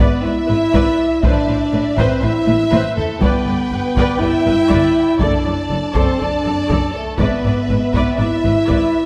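Bathed in a wet scoring-stage reverb, this short cut from an epic, cinematic orchestral film score strides along at 121 BPM in G major with an adventurous, heroic mood: a dark, distant violin section carries the melody over a focused second violin line and a smooth, lush viola accompaniment, while a mellow French horn section sits up front holding sustained chords, cellos and double basses anchor the bass in the background, and a close taiko ensemble struck with hard sticks enters at 0.7 s and adds a fill at 2.5 s.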